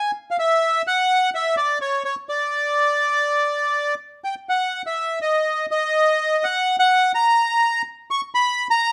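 A light reverb surrounds a lone bandoneon, its reedy voice placed up front and close to the listener. This is a short tango passage, cut from a longer piece and lasting just under 9 seconds, with a melancholic yet passionate mood. The tempo sits around 124 BPM in 4/4, but the playing is rubato, so the pulse breathes and bends. The bandoneon carries the solo line from start to finish, staying in a high register between C#5 and C#6. The passage falls into two parts, with the second beginning at 4.5 seconds and carrying the melancholic, passionate character through to the end.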